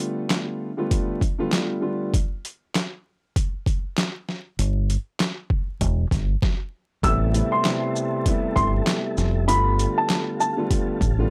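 Gritty and moody, this boom-bap hip-hop excerpt in A minor moves at 98 BPM with a swung 16th feel, opening on an overdriven, thumpy sampler-style kit of kick, medium-tuned snare, handclaps, hi-hat and shaker alongside a boxy, deep-toned concert grand that plays chords until 2.1 seconds. A round, dub-style fingered electric bass with tube saturation enters at 4.6 seconds, and after a brief stop the grand piano returns at 7.0 seconds on cassette-tape grit, joined by a woody upright piano melody with audible action noise and a soft, flute-like tonewheel organ holding chords through a fast rotary speaker in the background. The dry, hardware-recorded sound carries a layer of vinyl crackle.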